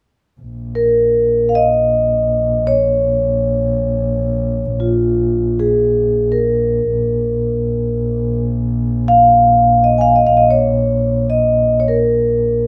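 A dark, woody bowed double bass opens at 0.4 s with a smooth, vibrato-shaded drone on Bb1, and at 0.8 s a mellow, ringing vibraphone played with soft mallets and its motor off enters up front with a mid-forward melody between F4 and Ab5, giving this windswept, solemn Mongolian folk fragment in free time and the Bb yu mode a detailed, close sound set in a moderate recital hall reverb before it is cut from a longer piece.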